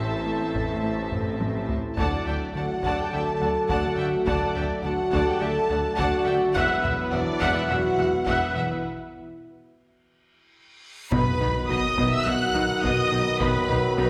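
Cinematic hybrid orchestral and electronic film score at 105 BPM, relentless and brooding, where a lush, expressive violin melody with soft attack soars over a clear second violin line, rich background violas, a roomy French horn section, very quiet trombones, a dark tuba, cellos and double basses, a round analog bass riff, a ringing harp-like synth pluck playing arpeggios, a warbling lo-fi tape-like pad and compressed, saturated taiko drums struck with hard sticks, all heard from further back in a wet scoring stage, moving through Am, D, Esus2 and B before a break at 8.8 seconds leads into a huge, bright reverse cymbal at 10.8 seconds and a sub drop impact at 11.1 seconds.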